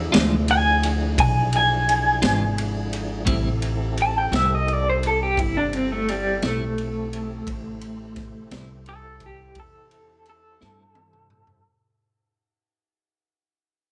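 A slightly broken-up electric guitar through a small old amp carries the melody from 0.5 seconds, its picked, compressed, lo-fi tone sitting up front with a touch of tremolo. This is a brooding, soulful slow blues in A minor, moving at 57 BPM in a straight 12/8 feel, cut from a longer piece and fading out across its whole length. Beneath it, a clean electric guitar plays picked, compressed accompaniment with its own tremolo, while a woody, growly upright bass with steel strings is plucked up front. A tonewheel organ holds clear sustained chords with audible key click, chorus vibrato and a slow rotary speaker. The raw garage drum kit sounds gritty and saturated, with a punchy kick, a high-tuned snare, ride cymbal and toms in a pumping small room with a rolled-off top, and it plays a fill from 10.6 seconds. The harmony moves from E7b9 to Am7 at 3.3 seconds, and the whole band sits in light reverb and small room ambience.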